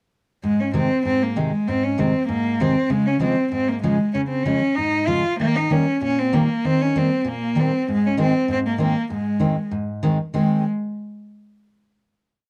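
A bouncy, straight two-beat pulse drives this short, jolly alpine dance tune, with a fingerpicked steel-string acoustic guitar playing off-beat triad chords on woody, full-bodied old strings beneath a bowed cello. The cello carries a motif-based melody in tidy period phrases, played sul tasto with light vibrato, a soft attack and a smooth, intimate top. Both instruments sit up front in a close, detailed recording with light reverb, and the piece settles on its final chord at 10.3 seconds.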